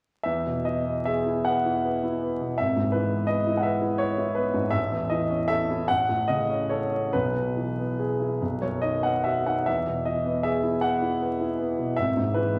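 A 6/8 pulse moves at 46-57 BPM in dotted quarters, stretched and held back with rubato, in this hopeful, passionate romantic character piece for solo piano in E major, tuned to A4 = 441 Hz. The concert grand sounds warm, natural and up front, with a deep bass reaching down to G#1 and a range extending up to F#5. Its harmony travels from E through E/G#, A, A6, E/B and B before returning to E and E/G#, all set in a wet recital hall reverb with a vinyl crackle, in this brief fragment cut from a longer work.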